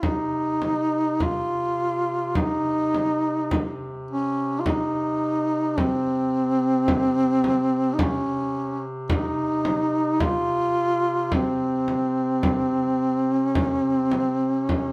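Caucasian folk lament at a slow 53 BPM in 4/4, played with rubato and uneven beats in C phrygian, carrying a longing, solemn mood through this excerpt cut from a longer piece. A dark, close-miked duduk sings the melody up front with vibrato between C4 and F4, while a second, warm and distant duduk holds a low C3 drone with scooped notes, and a deep, large frame drum sits forward with a compressed, saturated punch. The players perform live together in one room, their sound framed by a moderate large studio reverb.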